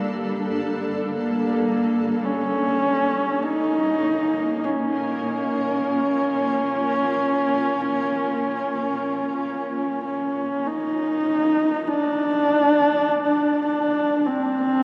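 In free time, this desolate, unsettling dark ambient drone, cut from a longer piece, sets a single dark, husky horsehead fiddle up front with woody, boxy bowed tone, vibrato and portamento, washed in shimmer reverb and delay, over a cloudy, blurred granular pad of detuned sine voices that fades out across its first 11.9 seconds as Gm and Bbm give way to Gm7, all sunk in a huge 7.4-second reverb and the warbling pitch drift of worn cassette tape.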